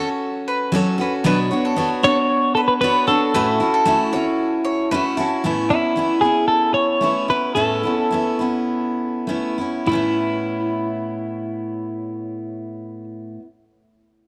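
A straight 4/4 pulse carries this easy-going, sunny pop excerpt, where an up-front, full-bodied jumbo acoustic guitar picks the accompaniment throughout, a bright bowl-back mandolin adds double-string arpeggios in the opening seconds, a clean, compressed twelve-string electric guitar with spring reverb takes up the melody from 2.0 s, and the pace slows from 5.4 s within a light, studio-ambient room.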